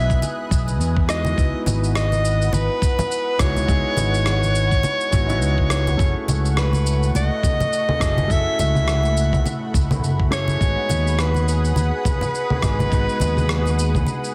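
Sunset chillout with a blissful, sunny mood, this excerpt moves at 104 BPM in 4/4 with a 16th-note swing, cut from a longer piece. A breathy, close-miked soprano saxophone carries the jazz-style melody up front with vibrato and a tape echo, while a warm grand piano with delay supplies accompaniment beneath it. A lush, detuned sawtooth pad with a sub octave, chorus and phaser holds sustained chords on a slow attack and long release, and a punchy, amped fingered electric bass sits forward in the mix. The drums are gritty, sampler-style sounds re-recorded in a large room, with a thumpy electronic kick alongside electronic cabasa, rim click and congas, the snare given soft clipping, while bright acoustic congas sit close and dry in the background. The harmony moves from Emaj7 to C#m11 at 1.4 seconds, then F#m7 and G#m7, all on a dense, heavily limited modern master with little reverb.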